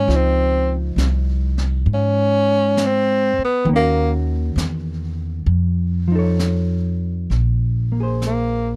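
A dry recording with little reverb captures this smoky, melancholic jazz ballad fragment in Db major, swinging gently at 67 BPM in 4/4. A breathy, present tenor saxophone with vibrato solos up front from 0.0 to 7.3 seconds over a woody, thumpy pizzicato upright bass, a dark, clean hollow-body electric guitar played with the fingers, and a distant, roomy brushed drum kit with a high-tuned snare and hi-hat. The harmony moves from Dbmaj9 through Ebm7 and F7b13 before settling on Bb7sus2 as a new section begins at 7.3 seconds.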